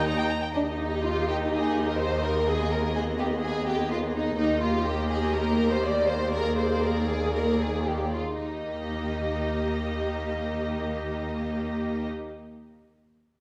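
In a rubato 4/4 at 106-130 BPM, this urgent, dramatic fast romantic movement in Eb major slows from 3.4 to 8.4 seconds before a new section begins, its harmony moving from Eb through Abm/Eb and Bb7/Eb back to Eb over a steady bass. Lush, vibrato-laden violins carry the melody high above a second violin line, while smooth, even violas fill in the accompaniment and full-bodied cellos anchor everything on a low Eb2. The symphony orchestra's string sections play together throughout this 12.1-second cut from a longer piece, set in a moderate scoring-stage reverb.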